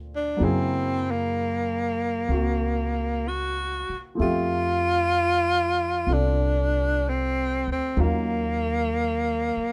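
Swung eighths at a slow 63 BPM in 4/4 carry this short, melancholic and smoky jazz ballad fragment, where a breathy, close-miked tenor saxophone takes the solo melody up front with subtone and vibrato from 0.2 seconds, a woody, thumpy pizzicato upright bass anchors the low end, and a natural-sounding baby grand piano sits in the background through F#9, Fmaj9 and Ebm7 chords in a lightly reverberant space.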